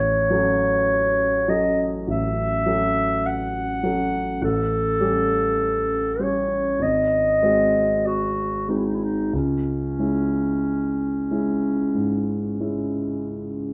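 Set in a slow, rubato 4/4 at roughly 45-52 BPM, this solemn, melancholic romantic classical passage in C# minor pairs a mellow, roomy clarinet carrying the melody with a concert grand piano whose deep bass and open tone give the accompaniment its weight. The harmony moves from F#m/A through A7 and G#7 to settle on C#m at 9.3 seconds, with both instruments sounding through the full 13.7 seconds of this short section cut from a longer piece. Close, detailed microphones keep the two instruments up front, while a moderate stone-room reverb surrounds them and the clarinet carries a distant air.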